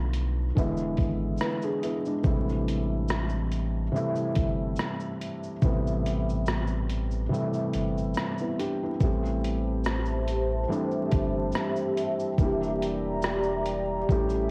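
Hazy and nostalgic, this lo-fi hip hop excerpt in A minor moves at a relaxed 71 BPM in 4/4 with a gentle swing on the sixteenths. A felt-muted upright piano carries the chords from the start, its thick felt giving a mellow, intimate tone with audible action noise and a cassette-tape softness, moving from Bm7b5 through E7 to Am7. Beneath it, a round dub sub bass built from triangle and square waves sits deep and sustained, while a boom bap sampler-style kit of hi-hat, thumpy kick, rim click and shaker adds 12-bit grit, its sound re-recorded in a large room. The kick drops out between 7.3 and 9.0 seconds before the phrase repeats, and at 9.7 seconds a dark analog pad of detuned sawtooth and sub octave enters with a slow attack, thickened by chorus and cassette tape. The whole piece sits in a moderate spring reverb with vinyl crackle and a home-cassette character, settling onto Em7b5 near the end.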